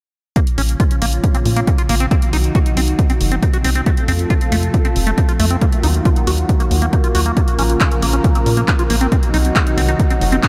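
Light reverb and a digital ambience frame this short slice of uplifting trance, cut from a longer piece and moving at 137 BPM in a straight 4/4 in B-flat harmonic minor. A lush, thick unison pad built from detuned sawtooth and square waves with an airy noise layer holds sustained chords through chorus and sidechain pumping, while a filter sweep runs across it. Over this, a squelchy, resonant acid bass plays arpeggios in a smooth, liquid tone, coloured by phaser and analog delay. Underneath, a tight, dark sequencer bass with a quick filter pluck drives from 0.6 to 10.4 seconds, pumping with the sidechain, as a punchy, tape-warm kick sits up front beside an analog drum machine's handclaps and hi-hat. The chords cycle from B-flat minor through C diminished, F and E-flat minor add9 before returning to B-flat minor and C diminished, giving the driving groove a soaring lift.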